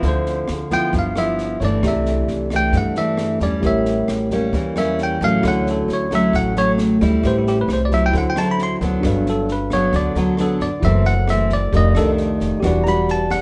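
Bossa nova with a relaxed, sophisticated mood, taken from a longer piece and moving in a straight 4/4 feel. A bell-like tine electric piano carries the melody as a solo throughout, its tone bright, clean and up front, while a fingerpicked nylon-string guitar with fresh strings and a deep classical sound, also up front, supplies the accompaniment. An upright bass played pizzicato gives a woody, dark low end, and a compact cocktail drum kit with a punchy kick, rim click and high-tuned snare sits quietly in the mix with a smooth, rolled-off top. From 1.8 seconds a second tine electric piano, clean through a combo amp, joins as further accompaniment. The harmony is rich with extended chords such as Dm9, G13 and A7b9, and the key centre shifts at 9.0 seconds as the opening section repeats. The band sounds as if playing live together in a moderately reverberant stone room, with a soft, darkened top end.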